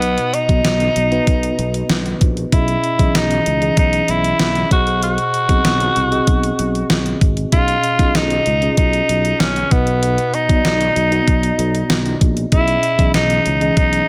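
1980s-style pop in B major at 96 BPM, uplifting and romantic, where a raspy, gritty tenor saxophone with vibrato and delay carries the melody up front over a mellow tine electric piano, a growly fretless bass bathed in lush chorus, and a clean 12-bit drum machine with a thumpy kick and fat snare in gated reverb, all moving through chords from B to C#madd9/B and G#7/B across this 14.1-second excerpt from a longer piece.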